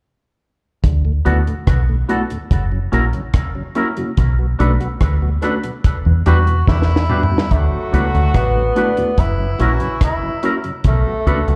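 Heard through a club PA in a small room with reverb, this excerpt of tender, smooth lovers rock reggae sits at 72 BPM in D major, built on an up-front, dark, foam-muted fingered bass and a dry, dark drum kit with a high-tuned snare and tight kick. A slow-rotating tonewheel organ with key click hangs in the background beneath a mellow tine electric piano and twangy, clean guitar stabs carrying dub echo, all moving through a D6, F#7, Bm7 and Em7 progression. At 6.3 seconds a distant, roomy tenor saxophone with subtone and scooped notes takes the jazz-style melody, and after a drum fill at 6.7 seconds it is joined at 7.5 seconds by a horn section playing a second line with light vibrato.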